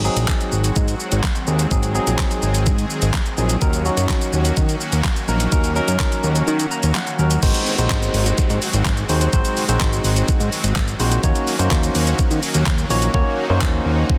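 A confident, bittersweet dance-pop excerpt at 126 BPM opens with a barky tine electric piano through a combo amp, a lush, detuned supersaw pad and a fat, nasal analog bass, each pumping under sidechain, over an overdriven, up-front pop drum kit of knocking kick, snare, handclaps, shaker, hi-hat and crash cymbal, as the chords move between Ab7 and Ebm7; the kick drops out under an electric piano fill at 6.5 seconds, a very quiet downlifter enters at 7.4 seconds, and the hi-hats fall away at 13.1 seconds in a dense, heavily limited modern master.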